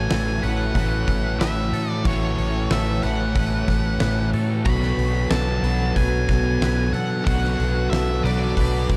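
Hazy and dreamy, this short rock passage drifts in shoegaze and dream pop territory at 92 BPM in a straight 4/4, set in A major and moving from an A6 chord to Bm7 at 4.7 seconds. A dark, distorted octave-fuzz lead guitar carries the melody high above, its notes trailing through analog delay. Beneath it, a thick fuzz guitar coated in chorus and a crunchy overdriven guitar with reverse reverb both play riffs, while a clean, twangy electric guitar picks compressed arpeggios in the background through chorus and delay. A vintage foam-muted fingered bass sits up front with a round, punchy tone, and a huge arena drum kit enters at 0.1 seconds with a fat snare, punchy kick and hi-hat ringing in a hall. Distant, roomy French horns hold sustained chords in the background, and the whole piece is framed by small room ambience and a dark, warm production.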